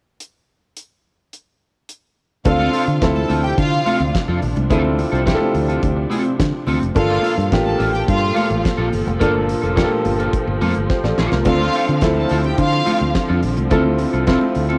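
A damped 70s drum kit opens this joyful, celebratory disco passage at 107 BPM in a straight 4/4, its dry, airy hi-hat, fat snare and tight kick carrying the groove until very quiet congas with a bright, high-tuned skin slip in at 2.4 seconds, just before the band arrives at 2.5 seconds over a Dm7 chord. From there a round, foam-muted fingered electric bass sits up front, while a baby grand piano with a natural, short sustain and an electric guitar at the edge of break-up, slightly gritty and twangy with subtle chorus, fill out the accompaniment. A lush violin section, bowed with expressive vibrato and set at a distance, carries a second line above a smooth, even string section holding sustained chords in the background. The harmony moves to Gm9 before a drum fill at 10.9 seconds leads back to Dm7. Light reverb and small room ambience frame the whole band, and the drums, guitar, piano and strings carry the soft grain of a home cassette recording in this cut from a longer piece.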